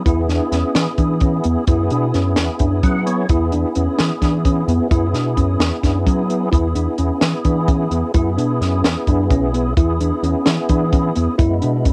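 A fat, lightly overdriven tonewheel organ with chorus vibrato and a slow rotary speaker opens this bright, driving progressive instrumental excerpt in 7/8 at 260 BPM in E mixolydian, joined at 0.1 s by a mellow tine electric piano playing arpeggios through analog delay, a dark, round, punchy picked electric bass and a dry, up-front cocktail drum kit with a high-tuned snare, while the organ plays a fill at 2.6 s over chords alternating between E7 and F#5, heard in the light reverb of a cassette home recording.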